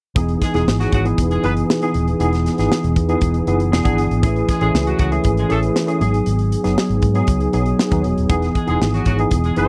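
A barky, slightly out-of-tune tine electric piano sits up front, lightly overdriven through a combo amp with an ensemble chorus shimmer, accompanying over Emaj7, Amaj7 and G#m7 chords in a breezy, upbeat piece of polished 1980s jazz-funk pop at 118 BPM in E major. Beneath it, a dark, round, foam-muted fingered electric bass and an airy, punchy modern studio drum kit with a medium-tuned snare drive a straight 4/4 groove, while a tight horn section with light vibrato adds a jazz-style second line from 0.4 seconds. The sound is dry and close, like a 1970s-style studio recording, and this short cut is taken from a longer piece.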